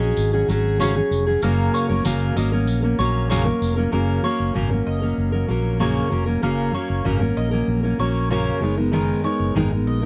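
A fingerpicked steel-string acoustic guitar, full-bodied and up front with fresh strings and a touch of finger squeak, opens this carefree, sunny acoustic pop excerpt alongside mandolin arpeggios on doubled strings and a dark, round fretless electric bass. A jingly tambourine joins at 0.2 s and drops out by 3.8 s, as the harmony rests on F# before shifting to G#madd9 at 8.6 s. The dry, close sound has a 1970s studio character.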